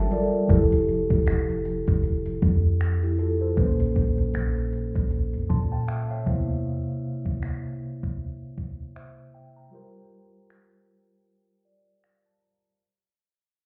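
A mellow, clean tine electric piano with a low-pass filter sweep provides the accompaniment in this smooth, romantic contemporary R&B excerpt at 78 BPM in F major with a swung 16th-note feel, adding fills over Fmaj9, Bbmadd9, C7 and Gm7 chords, while a deep, boomy 808-style sine bass holds the low end until 6.6 s and a crisp, overdriven 8-bit drum machine supplies a thumpy kick, hi-hat and finger snaps, the whole mix heard muffled as if through a wall with club reverb as it fades out toward a break at 11.3 s.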